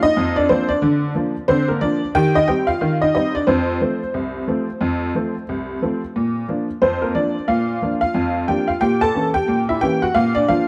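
A swung 2/4 pulse at 90 BPM drives this jaunty, playful ragtime excerpt in Bb major, where a solo honky-tonk upright piano, detuned, jangly, boxy and vintage in character, sits up front across its C2 to A5 range for the full 10.7 seconds, framed by a moderate plate reverb in a dark, warm production.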